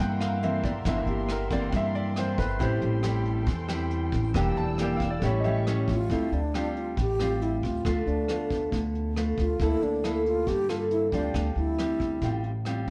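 Bossa nova in D minor at 137 BPM, smooth and intimate, cut from a longer piece and heard from further back in the room with light reverb. A clear, worn concert grand piano leads a solo passage over fingerpicked nylon-string guitar with audible finger squeak, woody pizzicato upright bass with a growly edge, a lo-fi brush kit with a punchy kick, hi-hat and rim click, and dark, veiled con sordino strings, before piano and strings drop out at 6.1 seconds. Entering just before that, at 5.9 seconds, a breathy alto flute carries the melody with vibrato and tongued notes over the guitar, bass and drums, as the chords move from Dm7 through Dm6 and a rootless C13/D to Dm11.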